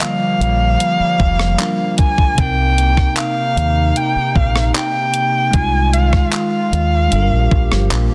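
Contemporary R&B in C minor at 76 BPM with a moody, late-night feel, where a dark, woody bowed erhu carries the up-front melody with vibrato and portamento over a bright, bell-like tine electric piano, a hollow, airy pad with chorus, and a thumpy, sampler-style 12-bit drum machine of kick, hi-hat, rim click and handclaps with a softly clipped snare, while a deep, round fingered dub bass joins at 0.4 seconds, the dry, dense and heavily limited mix moving through Gm7, Cm7 and Fm7/C.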